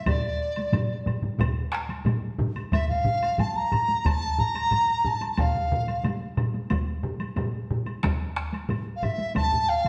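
A mellow large dizi with a buzzing bamboo tone, vibrato and crisp attack carries the melody in A miyako bushi over four hard- and heavy-stick taiko parts, one of which stops at 7.9 s, and a woody woodblock in this powerful, driving Japanese traditional taiko ensemble excerpt at 90 BPM in 4/4, played live in a wet stone room.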